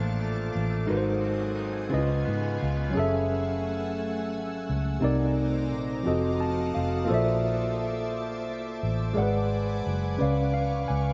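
Slow six-eight R&B at 58 BPM with a late-night, yearning mood, this brief cut from a longer piece sets a worn, slightly out-of-tune tine electric piano, lightly overdriven with slapback echo and playing fills around 6.0 and 10.2 seconds, up front beside a dark, round, foam-muted fingered electric bass, while a pure, calm organ-like pad holds sustained chords with ensemble chorus and its own reverb, and a twangy, slightly broken-up electric guitar with slapback echo adds a picked second line only until 3.5 seconds, all over a dry outdoor sound and rich chords such as F#m9 and A#maj9#11.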